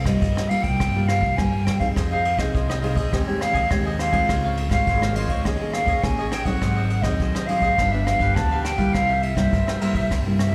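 Lively and nostalgic, this short cut of samba and choro at 103 BPM, heard as a live club gig through the venue's PA, sets an airy, distant concert flute melody with slapback echo over thumb-plucked nylon-string guitar, a woody, growly pizzicato upright bass and an up-front brushed drum kit with a boomy kick and dark cymbals, while a crisp picked cavaquinho, also touched by slapback echo, joins at 2.0 seconds as the chords move from C7sus4 through Fm7 and Dbmaj7 to close on C7.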